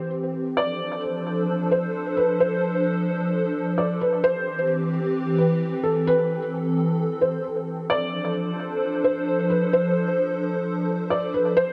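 A huge, wet ambient reverb with a long 7.7-second tail surrounds this short hip hop excerpt, softened overall by a low-pass filter that gives it a hazy, floating feel. At 131 BPM in 4/4 with a half-time feel, the mood is blissful and unhurried. A felt-muted upright piano carries the melody between A4 and D5, its muted, intimate tone sitting up front with audible action noise and a trailing delay. Alongside it, a hollow, flute-like pad holds sustained chords from E3 to C5, its detuned, warbling vintage character thickened by ensemble chorus and a moving notch. The harmony drifts from C to Dm7 at 0.6 seconds, then Cmaj7 at 4.2 seconds and back to Dm7 at 7.9 seconds, with both parts playing throughout.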